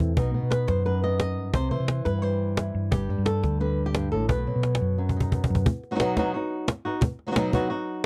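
A straight 4/4 pulse at 175 BPM drives this dramatic, mournful flamenco excerpt in B phrygian dominant, where an up-front, dark fingerpicked acoustic guitar with audible finger squeak carries the melody to 8.1 seconds, a round, amped hollow-body short-scale electric bass holds the low end until 5.7 seconds, and a woody cajon struck with hard hands and faint snares plays until 7.7 seconds with fills between 4.6 and 5.7 seconds, all captured in a dry, close 1970s-style studio sound as the chords move through B, C and G5 before returning to B.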